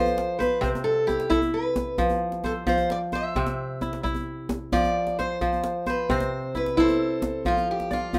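A picked steel-string acoustic guitar carries the melody up front with plate reverb, soloing from 0.0 to 7.5 seconds over bright, ringing, crisp kora arpeggios and a deep djembe with metal rattles that joins at 0.1 seconds, giving this warm, hypnotic excerpt of West African string and xylophone music in 12/8 at 88 BPM and F lydian its cycle between F5 and C chords, all in a rough home-demo mix with moderate studio reverb.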